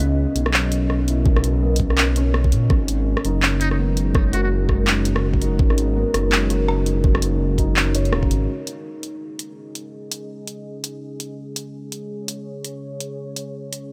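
A felt-muted upright piano, soft and intimate with audible action noise, 12-bit sampler grit and tape echo, spins arpeggios over a deep, warbling ambient pad and a rumbling detuned saw bass in this heavy, cinematic half-time drum and bass excerpt with a swung feel. Overdriven electronic drums bring bright hats, handclaps and rim clicks, joined by a knocking kick, while a buzzy, breathy muted trumpet with vibrato and scooped notes appears briefly at 3.6 seconds. By 8.5 seconds the piano, bass and kick have dropped away, leaving the chorused, sidechain-pumped pad and the kit to carry on in light digital ambience.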